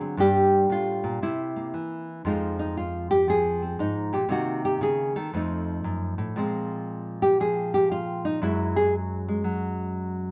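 Solo jazz on a nylon-string guitar, with a late-night, swinging mood and a loose eighth-note swing in four. The single acoustic guitar is fingerpicked in a classical manner and sits up front, its dark tone carrying small finger squeaks along the strings. After a brief opening passing through Gm9 and C7, the guitar moves into its solo at 2.2 seconds, running until the clip ends at 10.3 seconds over Fm7, Cm7b5, F7b9, Bbsus2 and Gbsus2. A moderate, large studio reverb surrounds the instrument, and the production has a dark, warm character. The recording is cut from a longer piece.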